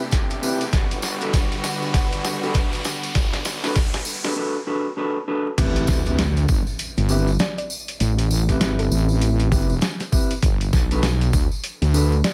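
A rich, bowed string section holds sustained chords with sidechain pumping and a filter sweep, joined by a bright, jingly tambourine and a background riser as this gritty, playful glitch hop cut builds over a drum fill at 99 BPM in A dorian, with a 16th-note swing and vinyl crackle throughout. A thumpy, pitched-down electronic kick sits up front beside a heavy, saturated sawtooth wobble bass with chorus, while a tape-toned, sampler-style kit of snare, hi-hat and crash and dark, clean, fingered electric guitar stabs through tape echo fill the groove. The drop lands at 5.6 seconds with an electronic impact, and from 7.4 seconds a woody, wave-folded pluck melody with a moving notch drifts in the background over Am7 and Gmaj7 chords.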